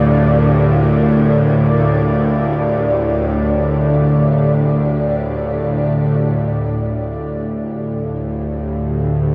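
A tense, string-like bowed drone sits up front in the low register, its bright, ring-modulated tone carrying vibrato and a noise layer through this unsettling, desolate dark ambient fragment in free time. Behind it, a mellow granular cloud pad holds blurred, detuned chords with a moving notch, while a resonant, bubbling sawtooth texture with random filter steps and chorus hovers on a single high note until 6.8 s, when the harmony settles from Bb6/D onto Dm. Everything is bathed in a vast, echoing reverb, and the pad and bubbling texture shimmer in their own added reverb tails.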